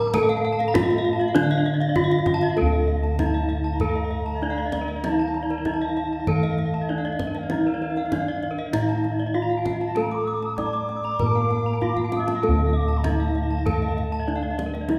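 A wet recital-hall reverb surrounds this hypnotic, brilliant Balinese gamelan passage in D pelog at 97 BPM, cut from a longer piece, where a wooden-mallet bronze metallophone carries the melody with paired tuning that sets up shimmering beats, while a mellow, padded-mallet metallophone plays soft accompaniment in the background and two horn-mallet metallophones ring out bright, airy arpeggios. Dark, round bossed gongs sit up front on the bass line, and a deep kendang played with hard hands adds percussion, with a drum fill at 11.8 seconds. From 3.2 seconds a close-miked, reedy bansuri with a straight, tongued tone joins as a second line.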